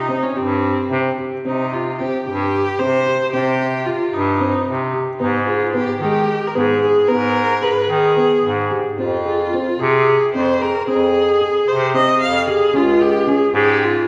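Driving straight eighths in 7/8 at 224 BPM give this urgent, hypnotic chamber piece in C phrygian its restless pulse, with a rich, bowed viola carrying the vibrato-laden melody up front, a breathy bass clarinet scooping into its bass notes, and a mellow, felt-muted upright piano rolling through soft arpeggios, all set back in a wet scoring-stage reverb as the harmony moves from C5 through Abm and Fm to Db in this short slice of a longer work.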